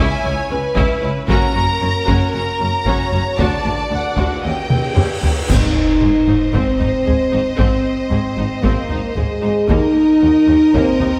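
Straight 4/4 taiko drumming struck with heavy sticks drives this triumphant, majestic excerpt of epic orchestral film score, where rich, distant violin sections carry the melody and a second line over vibrato-rich violas, prominent mellow French horns sustaining chords, and cellos and double basses low in the background; bright clash cymbals and concert bass drum join at 1.3 s, and a huge, dark cymbal swell builds from 4.7 s into an impact and band accent at 5.5 s, all bathed in a roomy scoring-stage reverb.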